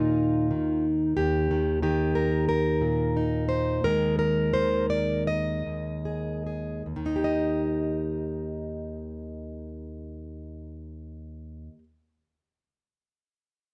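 A fingerpicked, plugged-in steel-string acoustic guitar plays alone from the first moment, its full-bodied jumbo tone sitting up front and close with little reverb, ranging from deep bass notes to bright high ones. This nostalgic, pastoral folk excerpt in 4/4 moves from Eb to Absus2 at 3.8 seconds and back to Eb at 6.9 seconds. The pace slows between 1.2 and 6.9 seconds, and the guitar continues until 11.8 seconds.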